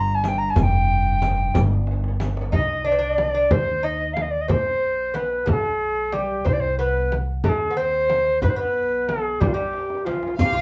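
A Persian modal ensemble piece in avaz esfahan on C, this short, hypnotic and soulful passage moves at a slow 61 beats per minute in a straight 6/8. An airy, wooden alto recorder carries the melody up front, its crisp chiff and vibrato sitting over a woody pizzicato upright bass, while a pure, floating cello holds a soft sul tasto drone in the background until about 2.6 seconds. Deep, dry frame drum struck with hard hands leads the percussion alongside a distant, roomy tombak, with a riq's dark jingles adding color at the opening and briefly again at the close. At 2.5 seconds a bright, delicate fingerpicked lute with doubled gut strings enters as a second line. Drum fills mark the passage at 1.9 and 9.7 seconds, and in the final moments a lush, expressive studio violin section touches a single high note. The band plays live in one room with moderate reverb and a softened, rounded top end.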